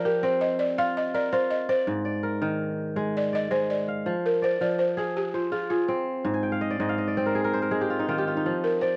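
This is a West African traditional piece in F dorian, cut from a longer performance, with a reflective, flowing mood set in 12/8 at 110 BPM on dotted quarters and a straight feel. A balafon carries the melody between F4 and F5, its woody, buzzing tone struck with soft rubber mallets and placed mid-forward and up front. Alongside it, a fingerpicked acoustic kora spins arpeggios from Ab2 to Ab5, sounding mellow, ringing and crisp, and it also sits close in the mix. The balafon takes a solo in the opening 4.1 seconds, after which the harmony moves from F minor to A-flat, and the kora adds a fill from 6.3 to 8.4 seconds. The dry, close studio sound has a 1970s character.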